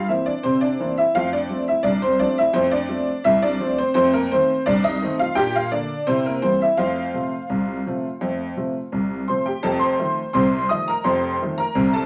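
Vinyl crackle and a roomy studio reverb frame this jaunty, cheerful fragment of straight-feel ragtime in F major at 85 BPM in 2/4, where a detuned, jangly honky-tonk upright piano plays alone up front across a span from deep bass to high treble, moving from C7 to F and later through Bb before a new section opens on F7 at 9.6 seconds.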